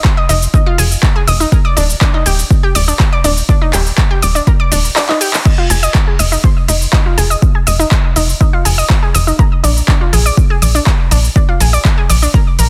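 A round, nasal analog pluck spins bright arpeggios over a punchy, overdriven electronic kick and a deep house drum kit of metallic hi-hats, cabasa, handclaps and crash cymbal, joined at 0.3 seconds by an up-front, saturated, sawtooth-edged sequencer bass pumping against the beat, giving this driving, expansive progressive house cut a dry, dense and heavily limited sound as the chords move from Fm7 to Ebmaj7, back to Fm7 and on to Bb7, with the kick dropping out at 5.0 seconds for a short drum fill.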